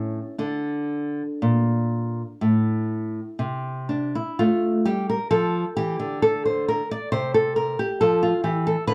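Grave and introspective, this brief fragment of a baroque-style classical dance in 4/4 drifts with rubato at a slow 57-69 BPM, its lone fingerpicked nylon-string guitar sounding dark, small and up front in a moderate studio reverb as a repeated phrase settles into F major from 4.4 s and reaches a high G5 at 8.0 s.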